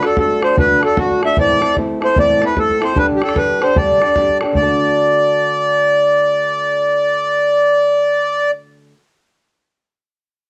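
A rollicking Celtic hornpipe in D mixolydian opens with a reedy, up-front accordion melody with slow beating and a cassette-tape tint, alongside a fingerpicked old ladder-braced acoustic guitar with woody, boxy old strings and an open, boomy bodhran. At 150 BPM with a swung 4/4 feel and tuning at A4 = 436 Hz, the harmony moves through D, Am and Dsus4 before returning to D as the second section begins at 4.6 seconds, just before the bodhran drops out at 4.8 seconds. The accordion stops at 8.5 seconds, letting the guitar finish this lively, lightly reverberant home cassette fragment cut from a longer piece.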